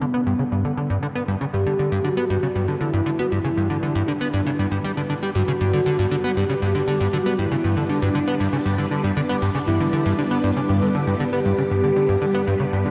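A punchy, funky analog bass sits up front, playing a plucky riff with a fast filter attack and ring-modulated edge, touched by subtle chorus and delay. This is ambient, sequencer-driven space music in G major at 118 BPM in a straight 4/4, cut from a longer piece and resting on a single G chord, with a cosmic, expansive mood. Above the bass, a soft, round synth lead layered with a sub octave carries the melody between B3 and G4, its sustained notes shaded by vibrato, chorus and delay. Behind them, a swirling, vintage string machine fades in with slow-attack sustained chords, glazed with ensemble chorus and phaser. From 0.6 s a very quiet, pulsing gated texture of detuned triangle voices adds a tempo-synced shimmer high in the register. The dark production is bathed in a huge ambient reverb with an 8.7-second decay, giving the whole excerpt a vast, floating sense of space.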